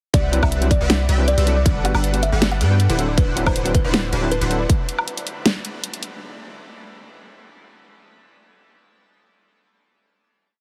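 Heavily compressed and radio-like with light digital ambience, this bittersweet, lush future bass drop pairs a punchy electronic kick and a dubstep kit with a huge snare, closed hats, hat rolls and high woodblock in a half-time beat with a deep sine 808 bass, detuned supersaw stabs in dotted-rhythm chords with ensemble chorus and sidechain pumping, a barky, overdriven tine electric piano with dub echo, a woody kalimba riff with tape echo, and a very quiet FM thumb-piano-like pluck running arpeggios, until the kit carries on alone to 6.1 seconds.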